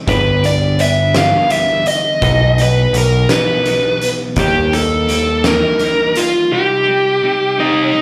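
Restless and cathartic, this short cut from a longer quiet-loud alternative rock piece moves in a slow 6/8 at 56 BPM in dotted quarters, captured live through a club PA with light club reverb. A dark, smooth lead guitar sits up front, carrying the melody with overdrive and slapback echo, while a clean, dark picked electric guitar spins arpeggios underneath through tremolo and analog delay. A growling picked bass, bright and overdriven, pushes forward until about 5.6 seconds. An oversized, low-tuned acoustic drum kit, with a fat snare, boomy kick and hi-hat, sounds saturated and gritty in a pumping stone room before dropping out around 6.3 seconds. The chords move from G to B, then Eb, and settle on Cm, leaving the two guitars to ring out to the 8.0-second mark.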